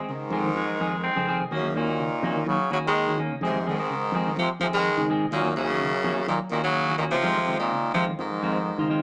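A gritty, close-miked tenor saxophone carries the melody up front in this funky, driving afrobeat excerpt, its scooped notes set over a buzzy muted trombone second line and a round fingered electric bass. Two clean electric guitars fill out the groove: one picks stabs bathed in spring reverb while the other plays soft arpeggios in the background, and a punchy, vintage-sounding baritone saxophone cuts in briefly between 0.6 and 1.4 seconds. The band sounds like it is playing live in one room, heard through a small speaker, as the harmony moves back and forth between Fm7 and Ebm7.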